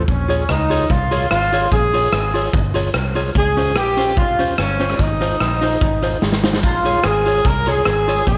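A straight 4/4 ska groove at 146 BPM drives this short, energetic excerpt in Bb dorian, cut from a longer piece. A raw garage drum kit sits up front with a punchy kick, a medium-tuned snare, rim clicks, hi-hat and splash cymbal, its saturated, gritty sound carrying a pumping, bright stone-room character and a rolled-off top, with a drum fill at 6.2 seconds. Underneath, a fingered electric bass plays dark and round, foam-muted and direct, while a mellow electric guitar adds clean, fingered accompaniment colored by tremolo. Leading the melody, a mellow horn section with light vibrato sounds punchy yet distant and roomy in a pop-style ensemble blend. The chords move from Bbm7 through Dbmaj7 and Ab6 before returning to Bbm7 at 6.6 seconds, all set in a moderate echo-chamber reverb.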